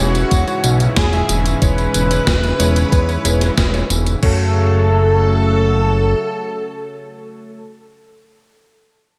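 Nocturnal and driving, this short synthwave excerpt moves at 92 BPM in a straight 4/4 feel in F# minor, tuned slightly sharp of standard pitch. An expressive, nasal synth lead carries the melody with vibrato and a mellow sawtooth edge, coloured by analog chorus and digital delay, while a shimmering string machine adds a second line in the background, bright and soft-edged under ensemble chorus and tape echo. A smooth, warbling analog pad holds sustained chords with sidechain pumping, and a clear electric grand piano adds clangy stabs roughened by vintage 12-bit sampler grit. Up front, a fat, detuned analog bass with tube saturation and a plucky filter anchors the low end until 6.1 seconds. The gated 80s drum machine, with its gated-reverb snare, hi-hat, tambourine and crash, and an overdriven, thumpy electronic kick both sound re-recorded in a large room, and both stop at 4.4 seconds as the harmony shifts from C#m/E to F#m for the second section, all within a light reverb.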